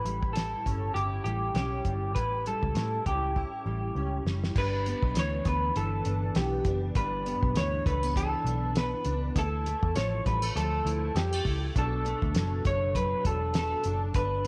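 Indie pop with a bedroom-pop lean, this sunny, dreamy excerpt from a longer piece moves at 100 BPM in 4/4 with a light swing on the sixteenths, set in G lydian. An electric guitar through a small old amp carries the melody up front, its tone dark, slightly broken-up and compressed, bathed in lush chorus. Beneath it, a fingerpicked steel-string dreadnought acoustic guitar sits lower in the mix with a full-bodied sound, thickened by ensemble chorus and a warbly pitch drift. A vintage muted electric bass gives round, punchy, foam-muted low notes, while a cloth-damped, thuddy drum kit enters at 0.1 s with a fat snare, tight kick, dark cymbals and a rolled-off top, dry and up front. A drum fill from 3.4 s leads into a new section at 4.6 s, where the harmony moves from A7 to G6, then Dmadd9 and Bm7, all held together by light, small-room reverb.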